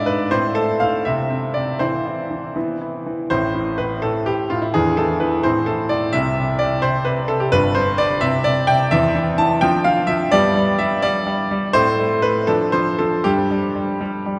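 A bright concert grand piano plays alone throughout this short excerpt of a classical-period sonatina, its brilliant, up-front tone spanning from a deep bass up into the high treble. The music is elegant and cheerful, moving in a lilting 6/8 with flexible rubato, and a fresh section begins at 3.3 seconds as the harmony moves back and forth between A minor and C major chords. The piano sits in a vast, echoing cathedral whose long reverb lingers around every phrase.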